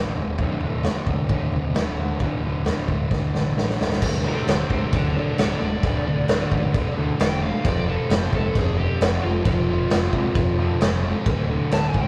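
A saturated, up-front garage drum kit with a tight kick and crash cymbal drives this gritty, menacing garage rock excerpt alongside a dark, double-tracked fuzz guitar riff and a growling overdriven bass in the background, and after a drum fill at 3.1 s an overdriven slide guitar played with fingerpicks enters at 4.3 s for a solo through to the end, all captured in a rough rehearsal-room sound with a short booth ambience.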